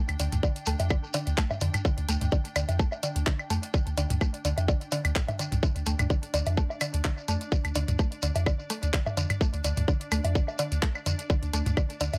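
A tight, up-front electronic kick drum drives this sparse, clinical minimal techno excerpt at 127 BPM in 4/4, running from 0.4 s to 11.9 s. Beneath it, a deep, punchy sine sub bass with a pitch-drop attack holds the low end between C2 and F2 with sidechain pumping, while a layered garage drum kit adds handclaps and warm hi-hats, with a 54% swing on the 16ths. Electronic claves, toms and woodblock bring an analog colour and tape echo, joined by a close, grainy acoustic shekere. A woody, round FM synth pluck with a noise layer and short decay plays a mallet-like riff from A2 to A3, shaded by analog chorus, tape echo and sidechain pumping. High above sits a quiet pulsing gated texture of detuned triangle voices, tempo-synced and bright, with a slow attack and long release through chorus, its own reverb and sidechain pumping, the whole excerpt set in D minor with A tuned to 438 Hz in a lightly reverberant space.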